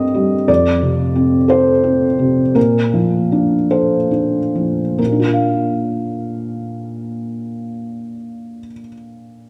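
A felt-muted upright piano plays an intimate, hopeful classical accompaniment in a rubato 6/8 for about 9.5 seconds, its dark, thick-felt tone sitting up front with audible action noise as it slows through the first 5 seconds, moving from F to Bbmaj7 before settling on Bb, all bathed in a recital hall's lingering reverb as this short cut from a longer piece drifts by.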